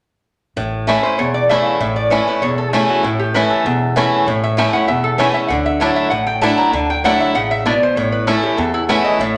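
A picked swing-style acoustic guitar sits up front with a bright, boxy tone from fresh strings, driving this lively bluegrass excerpt in A mixolydian at 195 BPM in a straight 4/4. A lap resonator guitar carries the melody from 1.0 seconds, its slide tone metallic and nasal as it ranges up to Bb5 with fingerpicks. A bluegrass banjo shares the melody from the background, twangy and percussive under its fingerpicks, while a pizzicato upright bass on gut strings adds a woody, thumpy low end from 0.6 seconds. The harmony moves from A to Dadd9 at 5.5 seconds before returning to A at 8.0 seconds. A wet, large studio reverb surrounds the band, lending the short cut a roomy, energetic sound.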